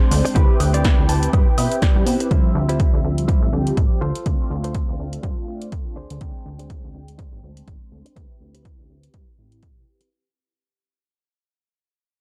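Filtered disco house with a groovy, funky swing and a dark production, this excerpt from a longer piece fades out under a continuous filter sweep: an up-front, tape-warm electronic kick and a punchy analog drum machine playing hi-hat, shaker, snare and woodblock run alongside a plucky, sawtooth-edged analog bass with tube saturation; a clean, direct-recorded electric guitar riff with harmonic tremolo adds a fill from 0.8 to 2.3 s; round, chorused synth brass with phaser carries the chords; and veiled, con sordino strings with 12-bit sampler grit sit in the background only until 2.3 s, with most parts breathing under sidechain pumping.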